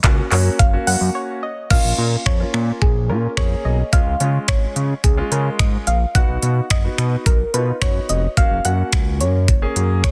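An up-front pop drum kit drives this upbeat, summery dance-pop excerpt at 108 BPM in 4/4. Its layered, electronic knocking kick and crisp hi-hats carry a tape-like tint, joined by handclaps, finger snaps, crash cymbal and a softly clipped snare. A fat, detuned sawtooth analog bass sits just as far forward, thick and saturated with a fast attack and sustained notes that pump under sidechain compression. A polished grand piano with long sustain pumps in the same way beneath them, and at 0.3 seconds a soft, round pluck enters with the melody, its dark, wave-folded filter tone decaying through chorus and dub echo. After a brief break from 1.1 to 1.7 seconds, the harmony in F# major moves from F# through A#m, C# and B before returning to F#, all within a dry, dense and heavily limited modern mix.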